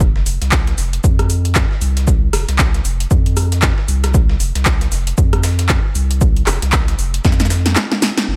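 A swung 116 BPM deep house groove in 4/4 opens this smooth, moody fragment, with a dry, punchy electronic kick and an overdriven deep house kit of handclaps, rim clicks, metallic hats and a punchy snare up front, a gritty, compressed sampler-style soul kit of hi-hat, shaker and snare sitting in the background, and a round, dark analog bass with tube saturation and sidechain pumping holding down the low end from F1 to F2, before a drum fill from 7.2 s leads into a band accent at 8.2 s.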